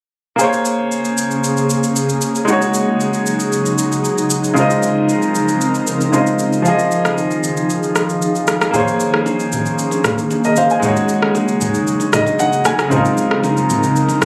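Over a straight 115 BPM amapiano groove in 4/4, an electronic, layered shaker and rim click pulse under a bright concert grand piano that sits up front, its brilliant, intimate tone carrying audible action noise and long sustain as it plays through Bbm9, Ab7sus4, Dbmaj13 and Fm7 in Bb minor, with a fill at 11.9 seconds. An ethereal, detuned sawtooth pad with a slow attack and ensemble chorus holds sustained chords beneath, while compressed, saturated congas and bongos slip into the background at 8.7 seconds. Caught on a phone in a small room with club reverb, this late-night, hypnotic excerpt is cut from a longer piece.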